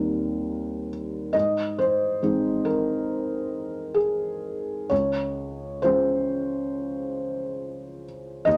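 Neoclassical minimalist piano, peaceful and hopeful, in which a solo felt-muted upright piano, up front and intimate with thick felt, a dark mellow tone and audible action noise, drifts in rubato through Cm/Eb, Ab and then Db at 4.9 s within a moderate studio reverb, in a brief fragment cut from a longer piece.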